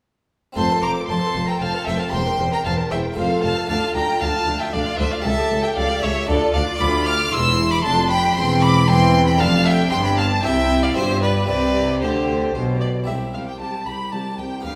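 Lively and festive, this fragment of a baroque-style concerto movement in 3/4 at 115 BPM moves from F major to C major at 6.8 s, with a clear, focused solo violin up front carrying the melody over two rich, vibrato-laden violin sections in the background, a smooth, even viola section, an expressive cello section and a bowed double bass section that stops at 13.1 s, all supported by a round, plucked French-style harpsichord and bathed in the reverb of a recital hall.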